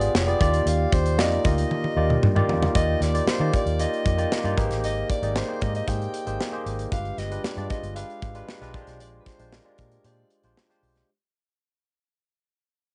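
A straight 4/4 groove drives this breezy, urban slice of polished 1980s jazz-funk pop, cut from a longer piece. A modern studio drum kit sits up front with an airy small-room sound, a tight kick, a medium-tuned snare, hi-hat and toms, and it plays a drum fill from 1.7 to 2.7 seconds. Beneath it, a vintage muted fingered electric bass gives a dark, round, foam-muted tone, while a barky tine electric piano, bright and lightly overdriven through a combo amp with subtle chorus and cassette tape color, carries the chords up front. A soprano saxophone takes the solo melody in a jazz style, with subtone, light vibrato and a soft attack, until it stops at 10.5 seconds. The harmony moves from Ebmaj9 through Abmaj9 and G7b9 to Bb13 under light reverb, and the home cassette recording, dull at the top end, fades out from 2.7 seconds to the end.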